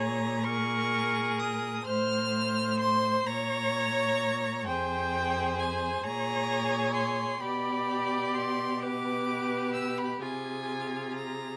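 A string quartet begins together in a slow, rubato 6/8 at 43 BPM in F minor, a short cut from a longer romantic classical movement with a melancholic, yearning mood. A rich first violin carries the melody up front with smooth vibrato, while a clear, more distant second violin traces a lighter second line, a focused viola fills in the accompaniment, and a close, expressive cello anchors the bass with soft attacks and portamento. The harmony moves from Bbm7 through F/A and G/B before reaching Fm/C at 10.2 seconds, heard in a small room with moderate reverb.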